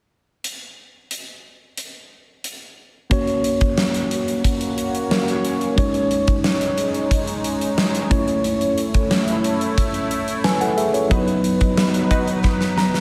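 Glossy and uplifting, this 1980s-style pop excerpt moves at 90 BPM in a straight 4/4, set in F# major and tuned slightly sharp of standard pitch. A huge arena drum kit opens alone at 0.4 seconds, its punchy kick, medium-tuned snare and hi-hat sitting up front and bathed in gated reverb. At 3.1 seconds a mellow tine electric piano enters with clean accompaniment through its built-in speakers, and a bright, evolving pad follows with sustained, detuned sawtooth chords, resonant filter swells and chorus. The harmony moves from F# through C#sus2 and A to B, where a band accent arrives and a funky polysynth briefly adds nasal, detuned stabs with chorus and tape echo, tucked in the background. A drum fill and an electric piano fill close the passage, all of it set in a lush hall reverb with a touch of small-room ambience.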